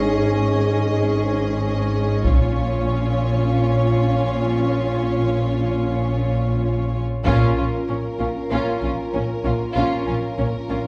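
Cinematic, epic orchestral film score in Bb minor at 96 BPM, dark and epic, heard as a short cut from a longer piece. A bowed violin section carries the melody between Bb4 and Eb5, smooth with vibrato and set at a distance, while a second, lush violin section holds a line beneath it and the violas play a close, even Db4. Mellow French horns hold chords from afar with light vibrato, and low strings anchor the bass: cellos sitting in the background around Ab2 to Bb2 and double basses up front an octave below, both rich and bowed. Harmony moves from Absus4 to Bb minor at 2.2 seconds, where a close, dry taiko ensemble struck with hard sticks enters, returning from 7.3 seconds to mark a band accent as the second section begins. The ensemble sounds from further back in a recital hall, wrapped in a wet reverb that lends a grand sense of space.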